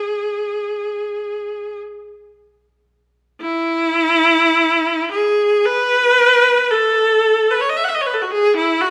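A single bowed viola carries this classical piece entirely on its own, its tone bright and focused, with a singing vibrato that gives each note a lonely, yearning quality. The playing is free and expressive, moving in a slow, flexible rubato over an underlying triple metre, so the pulse stretches and breathes with the phrasing. The line stays between E4 and F#5, and after about 3.4 seconds the music moves into a new passage that runs to the close at 8.9 seconds. The viola sits up front yet carries a slightly distant air, surrounded by a moderate recital hall reverb of about 1.7 seconds that lends the solo voice space and a sense of solitude. Cut from a longer piece, this short moment feels like an intimate fragment of a larger, searching meditation.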